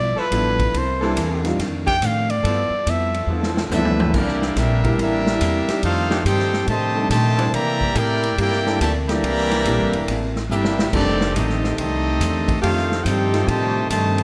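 A warm solo trumpet with light vibrato opens this joyful, energetic big band swing at 141 BPM. Beneath it play a dark, clean hollow-body electric guitar, a woody pizzicato upright bass, a baby grand piano and sustained chords from a clear saxophone section, with a natural big-room drum kit and its punchy kick. The solo ends at 3.3 seconds, and during a drum fill a brilliant, up-front trumpet section takes over the melody at 3.7 seconds, while a close-miked trombone section carries a second line over the G13, C13 and F13 changes, set in light reverb.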